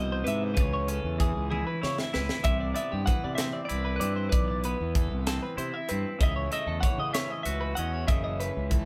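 A clean, dark-toned electric guitar carries the melody over a twangy picked guitar, a bright, compressed twelve-string arpeggio and an up-front fuzz bass, with a crisp fusion drum kit joining at 0.3 seconds in this bright, playful math rock and midwest emo passage in 6/8 at 64 BPM. The airy, polished kit features a high-tuned snare and tight kick, and adds a fill from 1.5 to 2.5 seconds. The harmony moves from C#m to Cmaj7 to A6/C#, and light reverb gives the feel of a band playing live in one room.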